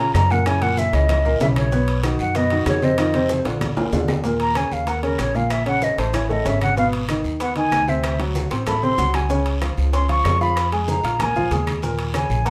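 A driving, straight 4/4 groove at 190 BPM in Eb minor carries this sultry Afro-Cuban jazz passage, cut from a longer piece. Ringing metal-shell timbales and distant, low-tuned congas with a thick skin make up part of the percussion, while tight, high-tuned bongos played with hard hands, woody vintage claves, a raspy guiro and grainy, mellow maracas sit very quietly or in the background. A dark, thumpy upright bass on gut strings plays pizzicato underneath, and a warm, present baby grand piano sits up front with chords such as Badd9, Gb7#9, D7 and Abm69. The concert flute, pure and straight-toned with a crisp attack, carries the melody and moves into a solo at 4.2 seconds. Drum fills arrive at 3.3 and 8.4 seconds, and light reverb lends the whole band a touch of space.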